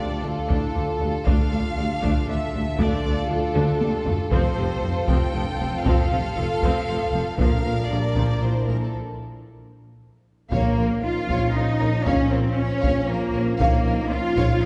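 Heard from the back of a reverberant concert hall with a softened top end, this excerpt from a dark, dramatic epic film score moves at 117 BPM in 3/4 and turns to Bb minor at 10.5 s. A rich, vibrato-laden chamber violin section carries the melody over a smooth second line from a symphonic violin section, while lush violas, cellos and double basses sit in the background beside a mellow French horn section holding chords and a soft-attack tuba on the bass. Close, dry taiko struck with hard sticks enter at 0.5 s and add fills, and a very quiet, dark trombone section joins with sustained chords for the final stretch from 10.5 s.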